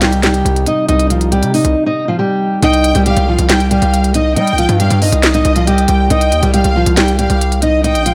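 Hip hop trap in C minor at 138 BPM with a half-time feel, this short, menacing and eerie excerpt is built on an up-front fingerpicked steel-string acoustic guitar melody, softened by a low-pass filter, over a heavy, saturated 808-style bass and a trap drum kit with a sharp snare, crisp hi-hats and handclaps. A deep, moody ambient pad hums very quietly beneath the opening, carrying on through a break at 1.8 seconds until 2.6 seconds. At 2.6 seconds, a distant, lush studio violin section enters with expressive vibrato and tape echo as a second line, all in a small room ambience.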